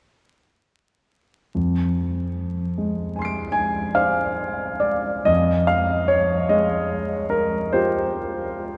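A vinyl crackle and a long, wet cathedral reverb set this recording in a vast, echoing space, where each sound lingers for several seconds. Within that haze, a solo grand piano sits up front, its tone smooth and vintage with a warm glow. The style is classical and impressionist, moving in a lilting 9/8 with free, rubato phrasing that gives it a nocturnal, wistful mood. The piano enters at 1.5 seconds and ranges from deep bass notes up into the high treble, with the harmony shifting to a richer, more colourful chord at 5.3 seconds as a second passage begins. This brief fragment of a longer piece ends at 8.8 seconds, its final notes dissolving into the cavernous reverb.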